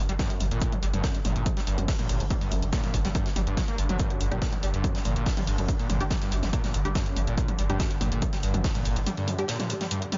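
A dry, echo-heavy mix with a dark top end opens this intense, industrial slice of driving peak-time techno at 142 BPM in G harmonic minor, where an up-front, tape-warm electronic kick and a punchy analog drum machine's pumping hats and toms carry a straight 4/4 pulse over a round, overdriven sub bass that drops out at 9.1 s. A screaming, squelchy acid line snarls through distortion, lush chorus and dub echo above a swarming, detuned granular drone, while a big rock kit with a fat snare and shaker sits far back in a bright stone room. From 4.3 s a muted, wave-folded dub chord stab joins in the background, plucked through a phaser and echo.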